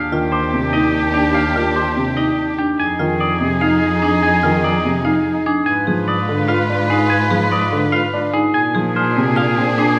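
A recital hall's moderate reverb lends this ten-second cut from a longer piece a rounded, spacious sound, framing a hypnotic, meditative slice of minimalist pattern music in a straight 7/8. A clean, twangy electric guitar carries the melody, joined by a clear oboe with classical vibrato as a second line. A lush symphonic string section holds bowed chords with soft attacks, while a single rich cello supplies the bass with expressive portamento. Underneath, a grand piano plays accompaniment, a woody, vintage-toned marimba struck with hard mallets runs arpeggios, and a small, bell-like celesta adds delicate arpeggios high in the background from 0.3 to 9.2 seconds. The harmony moves slowly through Ebmaj9, Fm7, Abm6 and Bb7, giving the repeating patterns a calm, circling quality.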